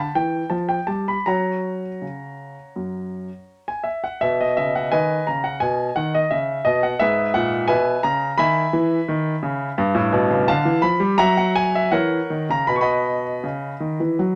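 Rubato phrasing in 4/4 gives this classical-period piano sonatina an unhurried, breathing pulse of roughly 78-88 BPM. It is a graceful and playful fragment in B major, cut from a longer piece. A solo concert grand carries everything from 0.0 to 14.4 s, ranging from F#2 up to C#6, with a warm, polished tone, deep bass and audible action noise that makes it feel intimate and up front. The harmony moves from an opening G5 through F#, B, E/G#, G7 and F#7 before settling on B at 12.7 s. A moderate stone-room reverb adds a gentle halo around the close, present instrument.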